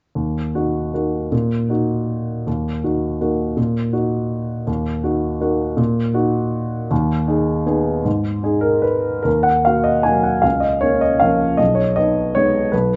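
An intimate baby grand piano, up front with its action noise audible, plays a bittersweet, nostalgic classical waltz alone in Eb minor at a rubato 139-170 BPM in 3/4, ranging from Cb2 to Ab5 through Ebm and Abm/Eb harmonies before a new passage at 9.3 seconds moves through Bbm/Db to Abm/Cb, all heard in a moderate, large studio reverb with a softened top end in this fragment of a longer piece.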